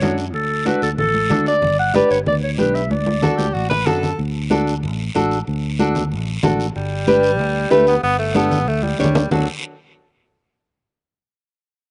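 A straight, festive cumbia groove of ringing congas and raspy guiro drives this joyful latin piece, with a fingerpicked classical nylon-string guitar (finger squeak and all) and a round, dark fingered electric bass underneath, while a distant, vibrato-laden clarinet carries the melody until 3.8 seconds and a clear tenor saxophone with slapback echo appears briefly at 3.2 seconds and returns at 6.8 seconds, all captured outdoors with little reverb and a rolled-off top end.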